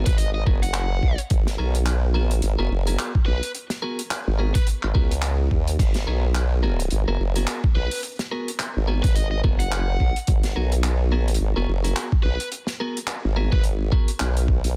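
Glitch hop at 107 BPM in G# minor, gritty and playful, swung on the sixteenths and resting on a single G#m9 chord through this short cut from a longer piece. An overdriven, thumpy electronic kick sits up front beside a formant-sweep wobble bass, sawtooth and sine with chorus and tube saturation, while a soul drum kit with dark cymbals, handclaps, hi-hat, a medium-tuned snare and a rolled-off top adds a pumping room sound. Clean picked electric guitar stabs carry sidechain pumping and tape echo, and a bright, biting overdriven lead guitar plays the melody with its own tape echo, all in a small room and a dense, heavily limited modern master.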